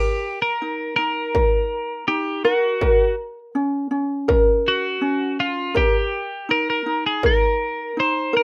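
This rough home demo has a light reverb and an up-front, unpolished sound, cut from a longer acoustic pop piece with an easy-going, heartfelt mood in a straight 4/4 feel. A twelve-string electric guitar carries the melody with a bright, clean, picked tone that is compressed and twangy. Beneath it, a thumb-plucked ukulele plays the accompaniment with an acoustic, bright, light touch, sitting just as close as the guitar. An electronic kick drum enters at 1.3 seconds and stops at 7.4 seconds; it is distorted, produced, and re-recorded in a small room, giving it a gritty character. The harmony moves from Eb5 to Gb at 2.5 seconds and returns to Eb at 5.8 seconds.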